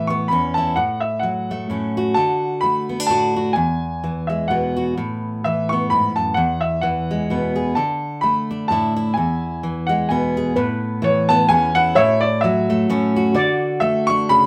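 This excerpt opens with a moderately reverberant studio sound that places a bright upright piano and a fingerpicked steel-string guitar close and up front. It is a pastoral, gentle piece of acoustic folk for a small group, moving at 128 BPM in a lilting 3/4 with a light swing in A major. The piano carries the melody high in its register with a brilliant, woody, polished tone, while the jumbo-bodied guitar supplies full, rounded accompaniment from low bass notes up through its middle range. At 10.6 seconds the opening passage returns and a steel pan joins with a quiet second line, its shimmering, mellow metallic voice played with soft rubber sticks and set in a boxy small-room ambience. The harmony drifts through open, airy chords such as Aadd9, F#m/A, D and Eadd9 before the clip breaks off at 14.5 seconds on a bare D5.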